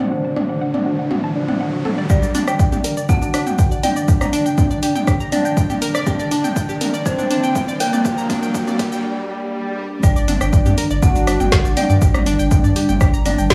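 A melancholic melodic techno excerpt opens with a smooth, vibrato-laden portamento lead steeped in lush chorus and tape echo, a moody sawtooth pad carrying phaser and vintage 12-bit sampler grit, a nasal analog pluck playing arpeggios, a background riser, and a deep house kit of woody snare, dark hats, rim clicks, shaker and toms; an eerie, inharmonic FM bell and a punchy, up-front kick enter at 2.1 s as a filter sweep on the pad, a drum fill, a break and a swell build toward a drop at 10.0 s, where a round, tube-saturated bass arrives, all the pitched parts pumping against the sidechain inside a moderate recital-hall reverb.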